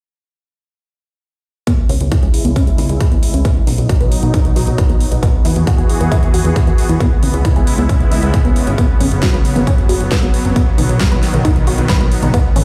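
This soaring, bittersweet uplifting trance passage in C# minor, cut from a longer piece, opens at 1.7 seconds with a lush supersaw pad, a tight sequenced arpeggio synth, a big-room dance drum kit and an up-front electronic kick arriving together at 135 BPM in a straight 4/4. The detuned sawtooth pad holds slow-attack chords with a sub octave and long release, bright yet filtered, pumping under sidechain while a filter sweep runs across it. In the background, the mellow, driving arpeggio line is coloured by chorus, phaser and tape echo, pumping under its own sidechain and carrying its own filter sweep. A funky, wave-folded analog bass with a ring-modulated, fast-attack, decaying pluck joins at 1.9 seconds, also pumping, while the punchy kick stands loudest in the mix and the layered kit adds a huge snare, metallic hats and toms, with the hats and toms breathing under sidechain. The harmony moves through C#m7, B, Eadd9, C#m7, F#sus4 and B, and the whole track sounds as though it was played over a big sound system in a bare stone room, with only slight reverb.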